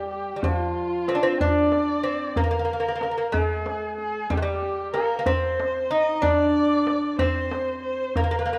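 Soulful and hypnotic, this short cut from a longer Persian modal ensemble piece moves in a straight 6/8 at 62 BPM in G dastgah shur, with a delicate fingerpicked lute carrying the melody on its double gut strings while a rich, bowed kamancheh adds an expressive second line with vibrato and portamento above it, and a deep, vintage-toned tombak played with soft hands enters at 0.4 seconds, all set in a moderate scoring-stage reverb.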